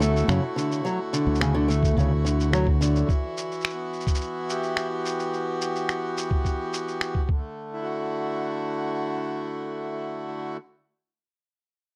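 A reedy, dark accordion holds sustained chords through this playful folktronica excerpt at 107 BPM in D major, joined at the start by boxy, tape-echoed fingerpicked archtop guitar arpeggios with audible finger squeak and a punchy, amped fingered electric bass, both of which stop by 3.1 seconds, while muffled, pitched-down sampler-style shaker and finger snaps run until 7.1 seconds and a thumpy, compressed electronic kick enters at 1.8 seconds, captured in a dry, close 1970s-style studio sound.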